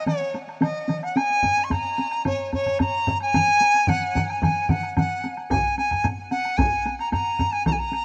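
Japanese traditional taiko drum ensemble music at 110 BPM in 4/4, driving and powerful, taken from a longer piece in an Ab suspended pentatonic mode. An up-front, bright bamboo dizi carries the melody from Db5 to Db6 with a buzzing membrane, pure tongued tone, vibrato and expressive phrasing, while layered taiko groups pound with heavy sticks: two close and dry, and a third in a small room entering at 1.4 s. A hard-stick taiko with a vintage, band-limited sound joins at 5.5 s, a woody woodblock ticks in the background, and a huge ambient reverb surrounds the ensemble.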